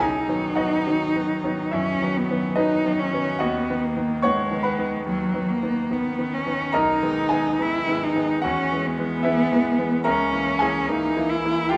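A rich, bowed solo cello sings a yearning, melancholic melody with expressive vibrato and portamento, up front over a bright, brilliant grand piano accompaniment, in this romantic classical duo taken from a longer piece at a rubato 72 BPM in 4/4, tuned to A4 = 441 Hz, with harmony that moves from B through B/D#, G#m/B and E to A#m7b5/C#, all bathed in the wet reverb of a recital hall.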